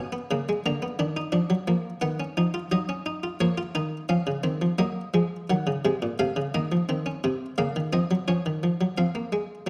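Classical baroque-style three-part fugue in a serious, contemplative mood at a steady 87 BPM, this excerpt from a longer piece features a solo buff-stop harpsichord in French style spanning Bb2 to Bb5, its plucked tone muted and lute-like, heard up front through close, detailed microphones in a moderate recital hall as minor harmonies around Ebm, Bbm and F7 unfold.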